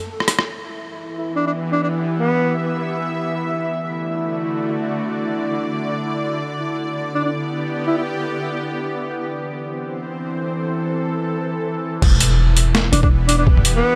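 Soaked in a huge ambient reverb, this heavy, cinematic half-time drum and bass excerpt in E minor drifts in free time: a soft, chorused pulsing gated texture in the background opens the excerpt, and after a brief drum fill at 0.2 s a tense, nasal, bowed-like drone with sidechain pumping joins it to carry chords from Em through D, G and Am, while a punchy, vibrato-laden alto saxophone with delay plays short classical-style solo phrases, until the drop at 12.0 s brings gritty, overdriven sampler-style boom bap drums with a high-tuned snare, a thumpy electronic kick up front, a growling, buzzy 808-style bass on E1 and a very quiet electronic impact.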